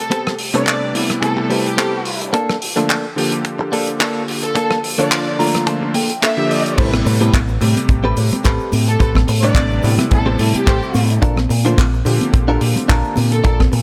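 Nu-disco with a groovy, sensual feel, this cut from a longer piece rides a lightly swung sixteenth-note pulse over chords moving between Am9 and Bbmaj7. An expressive, bowed symphonic violin section carries the melody with vibrato and a soft attack, while a clear, vintage electric grand piano with a clangy low end and chorused unisons supplies accompaniment, both treated with digital delay. A bright, clean, compressed electric guitar recorded direct plays a picked riff through lush chorus, a low-pass filter and delay, and takes a fill from 5.1 seconds as the opening build-up peaks. Underneath, a damped 70s drum kit with crash cymbal, handclaps, hi-hat and rim click sits dry with a rolled-off top, beside a tight acoustic kick. At the drop at 6.8 seconds, a fingered electric bass with an envelope filter comes in up front, warm and amped, joined by tube shaker and congas played with soft hands in the background. 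Light reverb and a small room ambience frame the mix.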